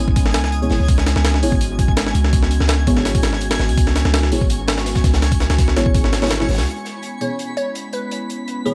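A dark, nostalgic drum and bass excerpt in a jungle vein, built on a single C#m7 chord, where a warbling, lo-fi tape-like pad and deep, mellow chord stabs with phaser, chorus, dub echo and a filter sweep sit over a boomy 808-style bass with a noise layer. An up-front, pitched-up sampler breakbeat with a thumpy kick and high-tuned snare drives things alongside a saturated, rolled-off acoustic break in the background, while a sparkling granular texture shimmers high above. At 6.7 seconds the bass and front kit drop out, and a glassy, crystalline wavetable pluck enters at 7.2 seconds with its own chorus and dub echo.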